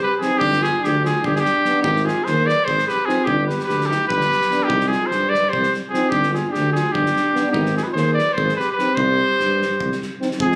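A clear trumpet carries the melody up front from the very start of this restless, virtuosic Balkan brass band excerpt, its tone smooth at the top and shaped in a classical style. Beside it, a clear alto saxophone plays a second line in the same polished manner, while a mellow French horn with vibrato and a soft attack sits in the background alongside a warm, distant trombone with light vibrato, both filling in the accompaniment from 0.2 seconds. A mellow yet punchy tuba with light vibrato anchors the bass from 0.4 seconds, and a loose acoustic drum kit with a fat snare and a punchy kick adds a pumping small-room feel. The tune runs in 7/8 at 294 BPM counted in eighths with a straight feel, set in C harmonic minor and moving through G, Ab and C minor harmonies before landing on a C5. It was captured on a phone in the room, with club reverb, light reverb and compression.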